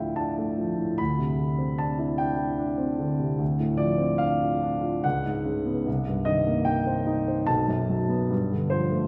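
Impressionist classical solo piano in a hazy, nocturnal mood, this brief passage from a longer piece unfolds in an unhurried rubato 3/4 metre as a warm concert grand with a deep bass and open tone sits up front within a wet concert-hall reverb, its harmonies drifting from Dmadd9 through Dm7 and Cm7 before settling on Gsus2 at 8.3 seconds.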